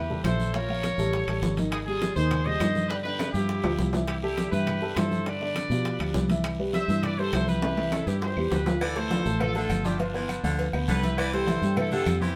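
Festive and joyful, this fast salsa excerpt at 203 BPM in C major sets a bright, punchy trumpet section with tape echo over a dark, boxy baby grand piano, a round, up-front fingered electric bass and a background bed of congas, tight bongos and cowbell, ringing timbales and agogo bells and very quiet woody claves, plus a raspy guiro, with drum fills at 3.2 and 7.6 seconds before a gritty baritone saxophone joins as a second line at 8.8 seconds, all in a band playing live in one room.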